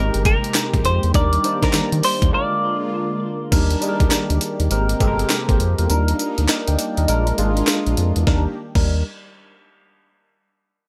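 A dry, up-front mix carries this flirty, bouncy new jack swing R&B in Eb major at 101 BPM, with swung sixteenths over Abmaj9, Ebmaj7 and Bb7 changes. A clean, hollow-body semi-hollow electric guitar plays the melody with analog chorus and tape echo only in the opening seconds. Meanwhile a tine electric piano through a combo amp and phaser supplies accompaniment, a round, dark analog bass holds the low end, and a brassy, detuned pad with chorus sits airy in the background. The gritty, compressed breakbeat kit, with thumpy kick, high-tuned snare, handclaps, hi-hat, tambourine and crash, drops into a break at 2.3 s and has its kick muted from 5.9 to 8.3 s.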